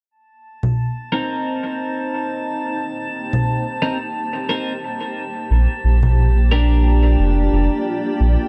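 Ambient dub with a spacious, deep mood, this short section of a longer piece opens on a fade-in as a drifting glass-harmonics texture appears at 0.5 seconds, its glassy, calm overtones softened by chorus and built-in reverb. Overdriven congas enter almost at once, sitting up front with a muffled, pitched-down, sampler-style character that sounds re-recorded in a small room, and they drop away at 6.1 seconds. A bright, twangy twelve-string electric guitar plays clean picked stabs, treated with lush chorus, a low-pass filter and dub echo, while a granular cloud pad holds blurred, evolving sustained chords, detuned and full-bodied. The harmony moves from Cm7 to Bb6 at 5.5 seconds, where a soft dub sub bass arrives, round and tube-saturated, giving the low end its weight. The production is dark and digital, with an ambience that keeps the parts floating in a deep space.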